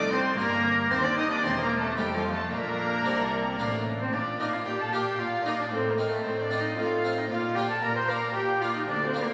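A lively, festive baroque-style concerto movement in Bb major opens at 113 BPM in a straight 3/4, with a brilliant, airy harpsichord up front beside gut-string chamber sections: violins in the background carrying the melody and a second line, a nasal viola section filling in the harmony, and a distant cello section and a double bass section anchoring the bass. A solo cello enters at 0.1 s, up front with a reedy, period-style tone, taking the melodic lead in this cut from a longer piece. The double bass section drops out at 4.1 s as the music moves into its second section, all set in a wet concert-hall reverb captured on a phone in the room.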